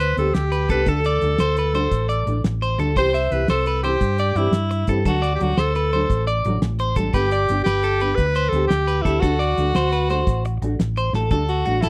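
Sunny and carefree, this highlife guitar band excerpt in a straight 12/8 at 115 BPM sets a breathy, whispered alto saxophone melody with slapback echo over twangy, slightly broken-up electric guitar arpeggios (also with slapback echo), a thumb-plucked nylon-string guitar, a round, punchy hollow-body bass and a damped 70s kit with a fat snare, moving through G, D and C in a dry, close small-room sound until a drum fill at 11.1 seconds.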